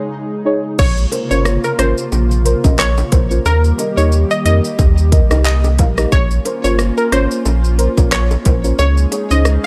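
An airy, breathy pad with sidechain pumping opens this tough, sultry dancehall excerpt at 0.0 seconds, and a deep, warbling chord stab with chorus soon joins it over a Dbsus2 chord. At 0.8 seconds the groove arrives at 90 BPM in Bb dorian, with swung sixteenths: a punchy, up-front pop drum kit of kick, crisp hi-hats, handclaps, rim clicks, shaker and crash, a round sub bass, tight saturated bongos in the background, and a glassy, crystalline wavetable pluck melody with chorus and digital delay. The chords move through Bbmadd9 and Eb under a digital ambience, and the kick drops out at 8.8 seconds as the harmony returns to Dbsus2.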